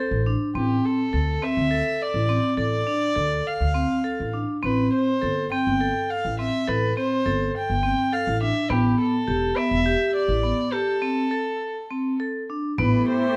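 Urgent and hypnotic, this short excerpt of contemporary chamber music in 7/8 at 207 BPM in A minor sets a dark, nasal, reedy bowed violin melody over metallic, ringing hard-mallet vibraphone arpeggios and woody pizzicato upright bass in a close, detailed recording with light reverb, until a break at 10.7 seconds gives way, near 12.8 seconds, to a brief touch from a small, bright frame drum and a pure, organ-like pad with ensemble chorus.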